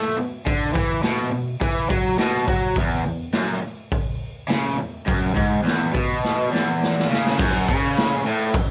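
The recording carries a light reverb and audible lossy compression artefacts, giving this short garage rock cut a rough, rowdy edge. An overdriven electric guitar opens the piece with a bright, picked riff between E2 and A3, double-tracked and placed up front. At 0.5 seconds a small-room acoustic drum kit joins, its boomy kick, medium-tuned snare, hi-hat and crash sounding saturated and gritty, with a mid-forward tone and a rolled-off top. The groove moves at a straight 104 BPM in 4/4 with a swaggering strut. A drum fill starting at 6.2 seconds leads into a new section at 7.4 seconds before the cut ends.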